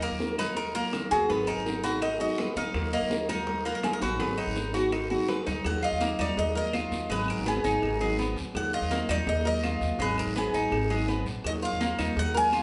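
A bright, metallic Cuban tres carries the melody up front over a second tres picking arpeggios, fingerpicked nylon-string guitar, a dark, thumpy gut-strung upright bass, and background bongos and cowbell, high-tuned congas, raspy guiro and very quiet woody claves in this danceable, sultry son and guajira excerpt at 166 BPM, cycling between Ebmadd9 and Abm7 in Eb minor with a drum fill at 5.1 seconds, all played live in one reverberant studio room.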